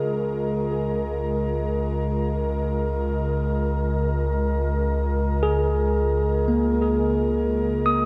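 Floating in free time with an unmeasured pulse, this short ambient fragment, cut from a longer piece, sets a serene, peaceful mood in Db major, tuned to A4 = 444 Hz. An airy, breathy pad sits up front, holding sustained chords from Db3 to Eb5 with a slow attack, long release, chorus, a detuned sawtooth-and-triangle blend with a noise layer and a moving notch, all bathed in shimmer reverb. Beside it, a clean tine electric piano plays arpeggios from Bb3 to Eb6 through its built-in speakers, carried by analog delay and shimmer reverb. At 0.5 s a deep, rumbling drone enters on Db2, an ominous, dark bass tone with a slow attack and its own built-in reverb. The whole passage rests on a single Db69 chord and sits in a wet spring reverb with a 2.4 s decay, giving an echo-heavy, suspended sound.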